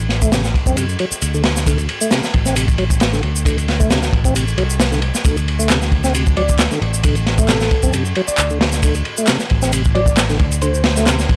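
A picked electric bass opens this swaggering, gritty breakbeat cut at 134 BPM, with a bright, growly tone, joined almost at once by a crunchy breakbeat kit of tight kick, dark ride cymbal and snare, up front and saturated, plus layered, overdriven electronic shaker and handclaps over a lightly swung 16th feel. A fat tonewheel organ riff with key click, overdrive, fast rotary speaker and tape echo rides the D7 harmony, and at 6.4 seconds a round, gentle FM synth lead enters in the background, its decaying keys-like notes coloured by chorus, tape echo and an old record sound. The dry hardware recording carries transformer saturation and light reverb, and the excerpt is cut from a longer piece.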